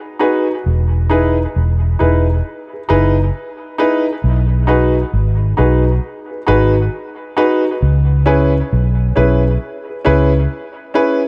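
A dark, woody upright piano opens this deep, hypnotic dub reggae excerpt with mellow stabs trailing dub echo, joined at 0.7 seconds by a round, foam-muted electric bass sitting up front, all in a swung groove that moves from G#m7 and Emaj7 through B6 to C#m7 under a moderate plate reverb.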